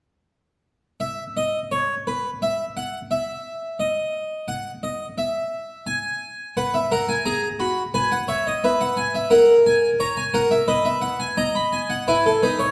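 A brilliant, plucked harpsichord sits up front and close-miked, its French-style tone full from three sets of strings, while a recital hall's reverb adds a wet halo around it. This elegant, lively baroque-style four-part fugue moves at 87 BPM in a straight 4/4, the solo instrument entering at 1.0 s and ranging from D#4 to B5. The opening passage stays unharmonized before harmony settles in around 6.6 s, passing through B5, C#m7/B, F#7/A#, B and E before this fragment of a longer piece breaks off at 12.7 s.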